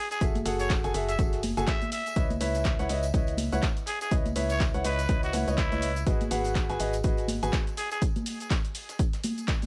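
A nasal, raspy straight-muted trumpet opens this soulful, energetic piano house excerpt in C# minor at 123 BPM with swung 16ths, its gritty jazz-style solo carried by delay and vintage sampler crunch, while a clear, intimate baby grand riff with sidechain pumping and delay and a hollow, organ-like FM bass move through F#m9, C#m9 and G#m7 over an up-front punchy electronic kick, analog drum-machine handclaps, hi-hat and shaker, soft-handed tambourine and congas, and a very quiet, dusty, tape-warm sampler kit of hi-hat and snare, inside a digital ambience, before the trumpet stops at 8.0 seconds.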